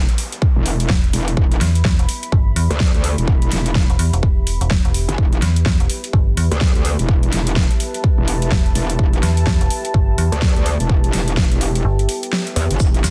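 A distorted, metallic wobble bass opens this swaggering, bouncy bass house excerpt in E minor at 126 BPM, its aggressive FM tone pumping against the kick with chorus and tube saturation. A very quiet electronic downlifter passes briefly at the start. A deep, moody pad of detuned sawtooth unison settles in high above, dark and slow to bloom, with chorus, its own reverb and a moving notch. A punchy, up-front electronic kick and a big-room dance kit with a huge snare, metallic hi-hats and ride drive a swung sixteenth-note groove, while a second, mellower FM bass with a decaying digital edge shares the low register. The kick drops out from 11.8 to 12.8 seconds, and a grainy acoustic tube shaker slips in at 12.8 seconds as the excerpt ends in its dry, dense, heavily limited mix.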